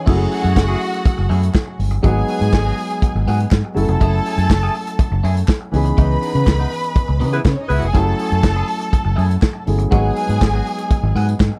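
Sultry and driving, this disco cut at 122 BPM in F# dorian rides a tight, up-front soul drum kit with dark cymbals and a round, punchy muted bass, while a natural grand piano and a bright, twangy clean electric guitar with phaser fill the accompaniment, a lush, focused bowed violin section carries a second line, crisp vintage handclaps sit in the background from 0.6 seconds, and a warm, smooth-topped horn section lands a brief octave-doubled stab at 7.3 seconds during a band accent, over F#m9, G#m7 and C#m9 changes in a dry mix.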